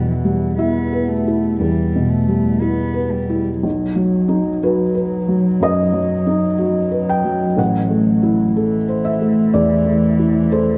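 In an unhurried rubato 4/4 around 58-62 BPM and tuned to A4 = 436 Hz, this longing, reflective neoclassical excerpt pairs an intimate, felt-muted upright piano, mellow and up front across its accompaniment, with a single bowed cello playing a dark, woody second line sul tasto with vibrato, close and a little quieter than the piano, both under light reverb as the harmony moves from E minor to B at 3.6 seconds and on to A minor at 7.6 seconds.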